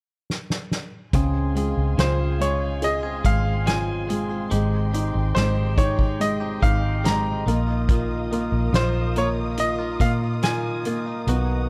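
A brilliant grand piano carries the melody from 2.0 seconds in this tender, emotional pop ballad excerpt at 71 BPM, opening on a soft-mallet drum fill with a boomy kick before a round, foam-muted fingered electric bass, a woody upright piano, a twangy clean electric guitar playing spring-reverbed arpeggios and a distant, veiled con sordino string section enter at 1.1 seconds over Dbmaj7, Abmaj7 and Ebsus2/Bb in a dark studio production.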